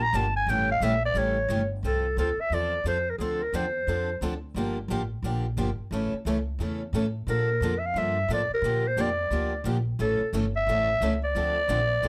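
A raspy, growling clarinet leads this fiery, virtuosic gypsy-jazz excerpt at 177 BPM with a swung feel, soloing up front from 0.0 to 1.8 seconds and continuing to 4.2 seconds before returning at 7.3 seconds over woody, dark pizzicato upright bass, a bright picked steel-string guitar with audible finger squeak, and a parlour-toned plugged-in acoustic guitar in the background, all captured by close, detailed microphones in light reverb as the chords move from A7 through F, Dm7 and Bbmaj7.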